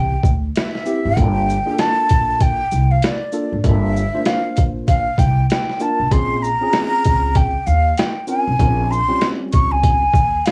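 Jazz-hop at 97 BPM with a swung 16th-note feel, this cool, nocturnal cut from a longer piece sets a breathy, straight-toned flute up front over a barky, slightly out-of-tune tine electric piano with light overdrive and a woody, growly pizzicato upright bass. A compressed, pitched-down boom bap kit enters at 0.2 seconds with a thumpy kick, high-tuned snare, hi-hat and shaker. The chords move from a rootless Am9 to Gm9 and then Bbm9 at 6.1 seconds, all in a dry, gritty recording dusted with vinyl crackle.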